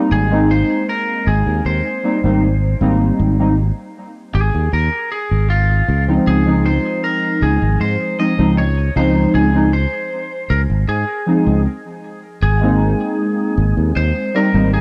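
Vaporwave at a relaxed 78 BPM in 4/4 and Ab major, this short excerpt cut from a longer piece has a dreamy, faded mood. Warbly, detuned synth keys carry the accompaniment from the start, their nostalgic square- and sawtooth-tinged tone softened by lush chorus and tape echo. A lightly driven lead guitar takes the melody, sounding bright, twangy and slightly broken-up, with its own tape echo trailing the picked notes. Underneath, a sustaining fretless electric bass sits up front with a growly, direct and amped character. The harmony moves from Abmaj7 to Dbmaj9 at 5.9 seconds, and after a stop from 11.7 to 12.4 seconds the music returns to Abmaj7 for a brief closing section. The whole recording has the dry, close feel of cassette tape, with little room reverb.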